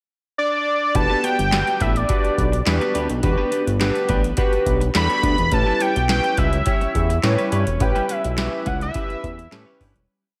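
This danceable, funky early-eighties boogie funk piece in E dorian opens with a pickup bar, where a fat, detuned sawtooth lead with chorus, vibrato and slapback echo states its motif-based call phrases from 0.4 seconds. The band enters on Em7, moving to A9 at 5.5 seconds. A booming analog drum machine sets a straight, mid-tempo boogie beat at 105 BPM in 4/4, its deep kick, crisp snare layered with handclaps and metallic hi-hats carrying an overdriven grit and a short room sound. A thick sawtooth bass plays a syncopated boogie line up front, while a glossy chorused polysynth adds mellow, syncopated chord stabs in rootless voicings, with filter sweeps and pulse-width modulation. Set back in the mix, a bright, twangy clean electric guitar picks choppy sixteenth-note figures, compressed and touched with subtle chorus. A wet recital-hall reverb gives the mix a big arena sound, and a fade-out beginning at 7.8 seconds closes the piece.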